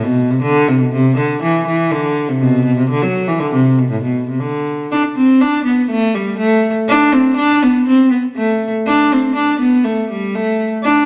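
A single bowed, fretted viola da gamba plays alone and up front, its woody, biting tone carrying a light vibrato across a range from A2 to D4. The piece is a festive, ancient-sounding medieval piece in D mixolydian at 121 BPM in a straight 2/4, tuned to A4 = 441 Hz, with a new section arriving at 4.9 seconds in this 11.1-second cut from a longer work. A wet, large studio reverb lets the notes ring, and a layer of vinyl crackle adds an aged surface.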